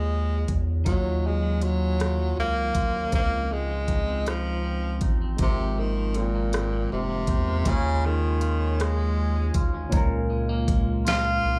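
A breathy tenor saxophone opens this slow, sensual R&B excerpt at 0.0 seconds, arriving together with a barky tine electric piano and a round analog bass over an Eb7sus4 chord. The piece moves in a straight 6/8 at 53 BPM, with its tender mood carried by lush harmony such as Ebm9, Dbmaj9 and Ab69 before settling on Db6. The saxophone leads up front with a clear jazz-style solo tone full of subtone, vibrato and scooped notes, colored by plate reverb and slapback echo. The electric piano sits in the background through a combo amp with phaser, plate reverb and slapback echo, while the deep, sine-like bass holds a dark, sustained foundation. A produced electronic drum kit comes in at 0.5 seconds with a knocking kick, deep snare, smooth hats and rim clicks, and a clean, twangy, compressed electric guitar adds a picked second line in the background from 0.9 seconds. The whole performance has the feel of a live club gig heard through the venue's PA.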